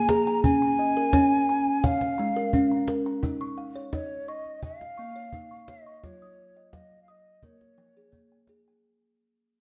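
Dark, reverberant scoring-stage ambience frames this gentle, meditative world piece in 4/4, where a woody, thumbnail-plucked kalimba spins arpeggios up front, an airy metal flute with vibrato, a crisp chiff and rolled-off highs carries the melody, and a close, snappy cajon with snares is played with soft hands, the whole passage fading out across its 8.8 seconds.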